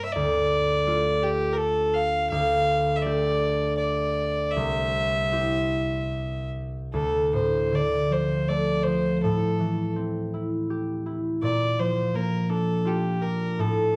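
Mournful and haunting, this Celtic slow air in D minor moves at 81 BPM in 3/4 with a rubato feel, its tuning set at A4 = 439 Hz. A single bowed fiddle carries the melody between G4 and F5, its gut-string tone reedy and slightly distant yet still placed up front. A concert harp accompanies from C2 to G4, fingerpicked, mellow and ringing, and sits a touch louder than the fiddle. The harmony moves from Dm through Gsus2/D and C, then a second phase from 6.9 s brings Dm, Am7 and a closing Bb69. A moderate recital hall reverb of 1.4 s and a dark, warm production wrap this short fragment of a longer piece, which runs to 14.0 s.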